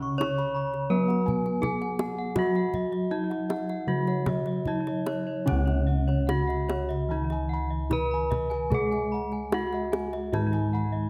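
This Javanese gamelan excerpt in slendro tuning moves at an unhurried, straight pulse, with a serene and ceremonial mood. A bronze metallophone carries the melody up front, its dark, smooth, horn-mallet ring touched by a slapback echo, while a lower metallophone supplies accompaniment beneath it. High above, bossed gongs and another metallophone spin arpeggios, the metallophone shimmering with the beating of paired tuning. A set of bossed gongs anchors the bass with a round, close-miked, dry and full tone, and the higher gongs sound boxy and warm. The kendang enters at 0.2 seconds with tight, soft-handed strokes, and the music shifts into a new section at 5.5 seconds, all captured with close, detailed microphones and a light reverb.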